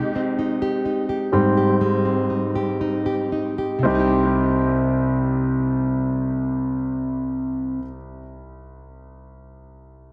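A clear, polished concert grand piano with tape echo and deep bass opens together with fingerpicked classical nylon-string guitar arpeggios in this emotional, longing pop ballad in C minor at 56-66 BPM, slowing over the first 3.8 seconds on an Abmaj7 chord before settling onto Cm, both instruments up front in an echo-heavy mix with moderate plate reverb, the guitar stopping at 8.0 seconds while the piano carries on to 10.1 seconds in this short cut from a longer piece.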